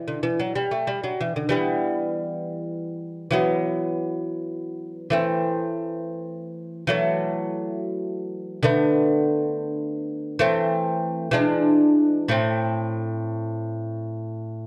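In a flowing 12/8 at 67 BPM with uneven, rubato beats, this grave baroque-style dance, cut from a longer piece, features a solo lute, bright and delicate with fingerpicked double nylon strings and some octave doubling, sitting up front in a dark production with light reverb as it moves from E minor toward A minor at 8.7 seconds, closing on an E7 to Am cadence.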